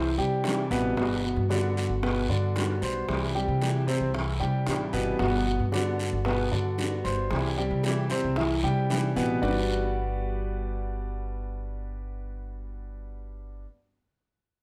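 A concert grand piano sits up front, spinning open, long-sustaining arpeggios with a deep low end across this danceable, warm fragment of Cuban son and guajira at 114 BPM in 4/4 with a straight feel. Beneath it, a woody, thumpy upright bass played pizzicato on gut strings carries the bass line just as prominently, while a full-bodied fingerpicked steel-string dreadnought guitar fills in the accompaniment. Tight, high-tuned bongos struck with hard hands sound distant in the background, joined by a raspy guiro that is close and dry. The harmony in G major rocks between C and Gmaj7, and a moderate large-studio reverb gives the ensemble a roomy sheen. The bongos and guiro drop out at 9.6 s, leaving piano, bass and guitar to carry the final stretch to the cut at 13.7 s.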